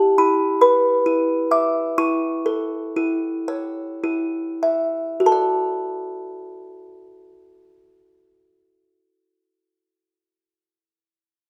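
A delicate, tinkling music box sits up front in a wet recital-hall reverb, its small-box tone dark, smooth and slightly out of tune. This sleepy, gentle children's piece, cut from a longer work, drifts in a rubato 6/8 as the solo music box plays alone from 0.0 to 9.3 seconds, slowing down over the opening 5.3 seconds. Its plucked line moves from E minor to A before settling on D at 5.3 seconds as a second section begins.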